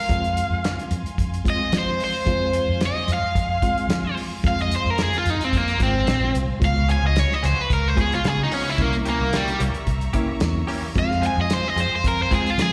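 A bright, overdriven guitar solo opens over smooth background strings, joined by a worn, reedy electric piano with fast tremolo, a round, foam-muted bass and a fat-snared soul drum kit in this brooding, soulful 110 BPM straight-eighth soul blues in F harmonic minor, with a twangy, compressed clean guitar adding stabs from 6.9 s as the chords move from Fm through Db7 and C7b9, all heard live through a venue PA in a recital hall's reverb.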